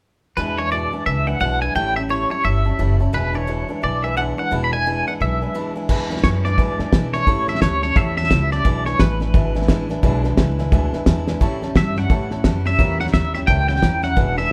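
Retro and upbeat, this rockabilly excerpt swings at 174 BPM in E mixolydian. A twangy, clean electric guitar carries the melody up front through tremolo, while a mellow upright piano and a bright picked dreadnought acoustic guitar fill out the accompaniment and a woody, thumpy pizzicato upright bass holds down the low end over E7, A7 and A#dim7 changes. After a short break at 5.5 seconds, a cloth-damped drum kit with a fat snare, tight kick and dark cymbals joins at 5.9 seconds and adds a fill at 11.2 seconds, all from a band playing live together in one room with light reverb.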